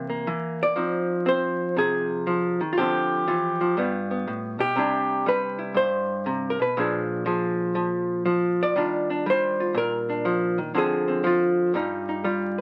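A lone hollow-body electric jazz guitar opens at once, clean, dark and compressed, picked up front through the crackle of a very old 78 rpm record, in a late-night solo jazz excerpt that swings in 4/4 at 120 BPM in C minor. Ranging from G2 to D5, it moves through rich extended harmony, from C7 and Fm7 through Dm9, G9, Cadd9, Bb7b9 and Ebmaj9 to Dm7b5 and an altered G7. A moderate studio ambience surrounds the guitar for the full 12.6 seconds.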